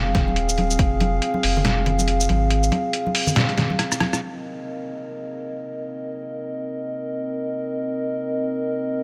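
A half-time 4/4 groove at 140 BPM with a 16th-note swing drives this short cut of dark, meditative deep dubstep in C minor. A punchy, overdriven electronic kick opens briefly, a gritty, pitched-down sampler kit of hi-hat, rim click, shaker and medium-tuned snare sits up front under low-pass filtering, and ringing, dry congas with dub echo stay in the background, while a round, mellow sub bass holds the low end until 2.7 seconds. After a drum fill at 3.8 seconds the percussion stops at 4.2 seconds, and the moody, nasal, detuned analog pad with chorus carries the move from Fm to Cm7 alone until 9.0 seconds, in a light reverb.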